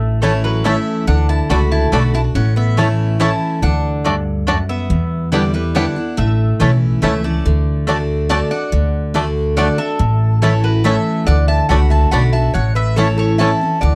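A thumpy, dark upright bass with gut strings sits up front in this driving, lively bluegrass piece in 3/4 at 141 BPM in D major, joined by a bright, full-bodied jumbo acoustic guitar picking the accompaniment. One mandolin carries the melody with a slapback echo, a second adds woody double-string stabs, a twangy, percussive fingerpicked banjo shares the lead from 0.2 seconds, and a metallic, nasal lap resonator guitar plays slide as a second line. The dry, close 1970s-style studio sound frames this excerpt from a longer piece as it moves through A, D and Em7 chords.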